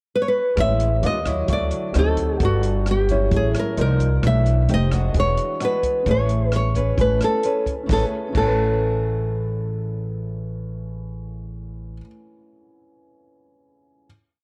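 Relaxed and breezy, this complete bossa nova piece moves at 131 BPM in a straight 4/4 in A major, opening with a brief pickup before the band settles in at 0.6 seconds. Up front, a full-bodied, fingerpicked classical nylon-string guitar carries the melody in short hook phrases, while a second, smaller and darker nylon-string guitar supplies fingerpicked thumb bass and syncopated plucked chords. A woody, growly pizzicato upright bass with steel strings sits prominently, playing a two-feel root-and-fifth line, and a compact cocktail drum kit lays down a soft bossa groove with a high-tuned snare, boomy kick, rim clicks, hi-hat and dark cymbals, its dry sound coloured by vintage 12-bit sampler grit until it drops out at 8.5 seconds. In the background, a mellow, intimate concert grand piano holds rootless chords with deep bass and audible action noise. The harmony slides through lush extended chords such as Amaj7, D#maj9, D7b9, Cm11 and E9 before resolving to a final Amaj9, with the piano ringing on alone until 14.1 seconds under a light studio reverb.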